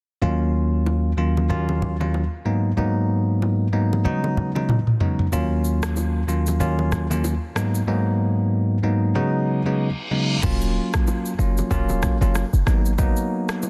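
A bell-like, barky tine electric piano carries this hypnotic, sultry afrobeats cut in Eb minor at 94 BPM with a swung 16th feel, cycling through Ebm7, Abm7 and Db9sus4 over close, dry congas and bongos played with soft hands, before a tape-hued, electronic afro-pop kit with a deep kick, rim click, shaker, toms and a lightly clipped snare enters on a drum fill at 4.1 seconds, and a reverse cymbal at 9.6 seconds leads into a punchy, tight sine 808-style bass at 10.4 seconds, all sitting in light reverb under a dense, heavily limited modern master.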